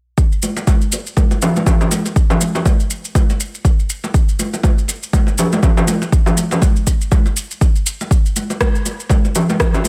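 A swung sixteenth-note house groove in 4/4 drives this earthy, percussion-only cut from a longer piece, built on a deep, overdriven electronic kick that sits up front and carries a small-room character. Layered electronic shaker and rim click, also overdriven and roomy, sit lower in the mix, while ringing, medium-tuned acoustic congas enter at 0.4 seconds with hard hands and a vintage, band-limited tone. A digital ambience surrounds the whole, carrying the driving pulse through its single section.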